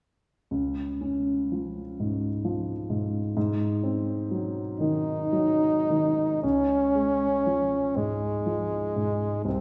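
Romantic classical music for French horn and grand piano, this brief passage is cut from a longer piece and unfolds in a tender 6/8 with rubato. The grand piano opens alone at 0.5 seconds, its dark, mellow tone smooth and vintage in character, with a short sustain that keeps the low accompaniment uncluttered. At 4.8 seconds the French horn enters up front with the melody, its clear voice shaped by a soft attack and light vibrato in a classical solo style. The harmony rests on the home chord, moves through a dominant seventh, and settles back home as the second section begins at 6.4 seconds. A recital hall reverb gives the duo a wet, resonant setting suggesting a church or concert hall, lending the whole a warm glow.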